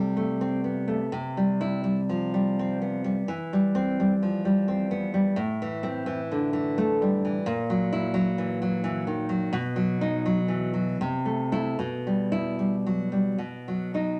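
Wistful and melancholic, this romantic piece for solo classical guitar moves in 3/4 with a rubato feel, its tempo drifting between 71 and 89 BPM. A single nylon-string guitar carries everything from 0.0 to 14.2 seconds, its fingerpicked lines spanning A2 to E4 with a full-bodied, deep classical tone and the warmth of fresh strings. The guitar sits up front, wrapped in a moderate studio reverb that lends a soft sense of space. The harmony starts from Am/C and turns to C, then passes through Am to a poignant F#7/A# and B by 9.5 seconds. It then settles back through Am/C and Em/B before resting on B at 13.4 seconds, leaving this excerpt of a longer piece suspended and unresolved.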